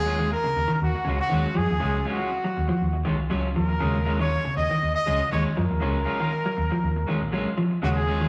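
Afrobeat at 120 BPM in Eb minor, this driving, funky excerpt from a longer piece rides a single Ebm11 chord as a clear, smooth-topped trumpet carries the melody over a breathy, whispered second trumpet line, both with vibrato, while a dark, round hollow-body short-scale bass sits up front, a slightly broken-up electric guitar picks stabs from 0.1 seconds, and a clean, picked guitar plays arpeggios through spring reverb from 0.2 seconds, all in a rough rehearsal-room recording with a wet stone room reverb.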